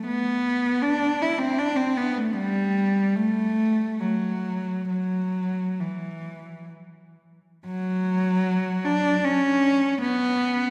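Classical and free in form, this brief excerpt for unaccompanied cello moves in a rubato 3/4 at roughly 56-79 BPM, settling into B minor from 7.7 s with a meditative, mournful air. The single bowed cello sits close and up front, its sul tasto tone airy and intimate, with light vibrato and a soft attack across its span from E3 to E4. A church reverb lingers around it for 2.9 seconds, lending the solo line a spacious, hallowed glow.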